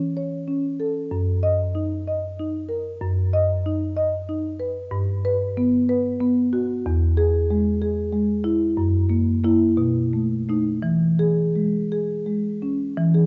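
Contemporary classical music for solo marimba, this short excerpt cut from a longer piece moves with a playful, flowing mood in a relaxed 6/8, its dotted-quarter pulse drifting between 55 and 64 BPM with a rubato feel. The marimba, struck with soft mallets, sits up front and carries everything alone from 0.0 to 13.3 seconds, ranging from E2 up to D#5. Its padauk bars give a woody, round and mellow tone, smooth and dark rather than bright. Rooted in E major, the harmony wanders through colorful chords such as F#6, B/F# and a striking Gmaj7 before F#7 and B7 lead home to a gentle E6. A moderate concert hall reverb with a 2.2-second decay surrounds the instrument, and the dark, warm production keeps the highs rolled off for a cushioned, intimate sound.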